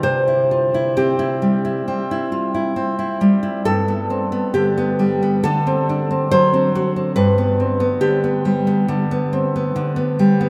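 In a rubato 4/4 at 68 BPM, this tender, romantic fragment for solo classical guitar in C major, tuned to A4 = 444 Hz, features an up-front, fingerpicked nylon-string guitar with a warm acoustic tone, ranging from G2 to C5 and moving from C to G, D7 and back to G, its sound bathed in a long, wet cathedral reverb that places it in a vast, echoing space.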